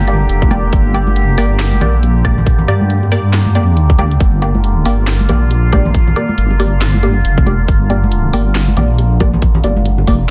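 Dark and brooding, this half-time, swung deep dubstep excerpt rests on a wobbling sawtooth-and-sine bass held up front with chorus, a resonant drone of sustained chords with moving overtones, phaser and built-in reverb, and muted, detuned dub chord stabs with filter plucks, phaser and dub echo, while a garage drum kit of cracking snare, hi-hat and handclaps, ringing bongos and congas with dub echo in the background, and a tight, layered electronic kick from 0.4 s drive a dense, heavily limited mix with little reverb.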